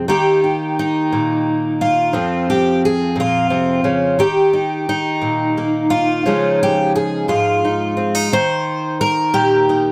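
Haunting and reflective, this short folk excerpt in a slow 6/8 at 58 BPM features a fingerpicked twelve-string acoustic guitar alone, up front with a bright, shimmering, octave-doubled sound and light reverb, moving through Eb, F5 and Dbadd9 chords before settling back on Eb.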